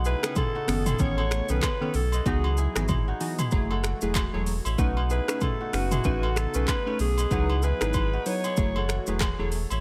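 Afrobeats at 95 BPM with a mellow, smooth swing, this excerpt sets a raspy alto saxophone melody over a crisp fingerpicked kora riff, glassy chorused digital keys cycling through B9, C#m11 and F#m9, a very quiet hollow pad, a deep up-front sub bass with octave, agogo bells, and an overdriven deep house drum kit whose deep kick and metallic hats sit alongside finger snaps, handclaps, rim clicks, shaker and toms, all in a digital ambience.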